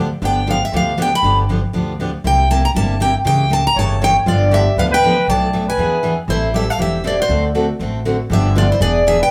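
Acoustic string swing in the jazz manouche vein, this brief, playful excerpt moves at a brisk 238 BPM in G mixolydian, swinging through a chord cycle that runs from G7 to C7 and a C#dim7 before turning around through Am7 and D7. A bright, up-front picked steel-string guitar carries the melody high over a second picked guitar playing accompaniment, while a woody, thumpy upright bass with gut strings anchors the low end. At 3.8 seconds a distant, raspy growling trumpet slides in with scooped notes and vibrato as a second line, all set in a lively room ambience of a band playing live together.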